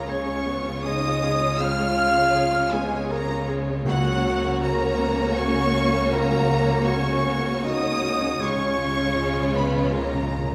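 A short passage from a cinematic, emotional film score opens with nearly the whole orchestra sounding together, the violin section carrying a lush, vibrato-rich melody high above while a large, airy flute ensemble adds a second line in the background. A mellow solo clarinet and a second violin line sit beneath, supported by a dark viola section, a felt-muted upright piano with thin felt and audible action noise, and a distant, roomy French horn section holding sustained chords. The low end rests on a soft-attack cello section and a clear, intense double bass section, both bowed. Set at 79 BPM in 3/4 with a rubato feel in F# major, the music feels moving and full of longing as the harmony drifts from A#m7/C# to F#/C# at 3.9 seconds and settles on C# at 8.4 seconds. Very quiet timpani with soft mallets add a round, close and dry touch around 3.8 seconds and return as a fill from 8.4 seconds, all bathed in a wet scoring-stage reverb.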